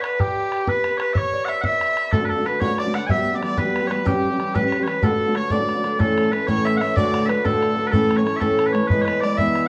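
A cheerful, rollicking Celtic jig in 6/8 at 124 BPM opens in D major with sweet, vibrato-laden small bagpipes carrying the melody up front, while a woody, dark-toned fiddle and a ringing, thumb-plucked Celtic harp tucked in the background play second lines over a boomy bodhran. At 2.1 seconds a fingerpicked steel-string acoustic guitar enters with warm, fresh strings and audible finger squeak, prominent in the mix, and the tune moves into A major at 6.0 seconds. The ensemble, tuned slightly low at A4 = 436 Hz, sits in a small, reverberant room in this short cut from a longer piece.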